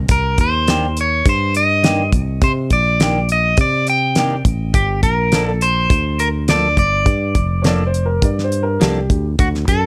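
A straight-eighth groove in 4/4 at 103 BPM drives this brooding, smoky soul blues in G minor, cut from a longer piece. A damped 70s drum kit sits up front with a fat snare, tight kick and hi-hat, dry in feel. A fingered electric bass, dark and round, anchors the low end from the start, while an electric guitar at the edge of break-up carries the melody with a bright, twangy, slightly broken-up picked tone. A clean electric guitar adds picked stabs from 0.7 seconds, and a woody upright piano with long sustain slips in a second line at 7.6 seconds. The harmony moves from Cm9 to Gm9, and a light reverb gives the mix a touch of space.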